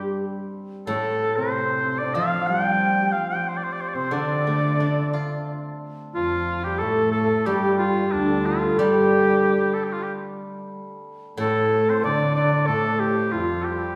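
From the opening, a tender, graceful Chinese traditional chamber piece in D yu mode at a rubato 92 BPM in 4/4 brings forward a solo oboe melody with light vibrato, while a breathy, hollow bamboo xiao, a shimmering hammered dulcimer and an intimate, softly bowed sul tasto cello carry second lines, and a bright, silvery steel-string zither plucked with fingerpicks accompanies until 13.3 s, all heard from further back in a recital hall's lush reverb in this fragment of a longer work.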